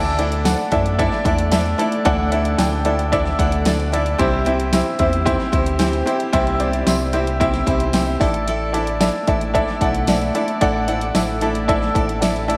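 A straight 4/4 pulse at 112 BPM drives this uplifting piano-driven pop excerpt, with a pop drum kit entering at 0.2 seconds, its punchy kick, fat snare and hi-hat giving a layered, produced electronic sound. An upright piano sits up front as the accompaniment, woody and slightly detuned with a short sustain, and it plays a brief fill from 7.4 to 8.5 seconds. Beneath it, a round analog bass holds the low end with a deep, dark, sustained tone and a fast attack. A picked steel-string acoustic guitar carries a full-bodied riff in the background, while a jingly tambourine, close and dry, adds sparkle from 0.5 seconds. The harmony moves from Dsus2 to C to Asus4, and a wet echo chamber reverb lends the whole a warm, roomy glow.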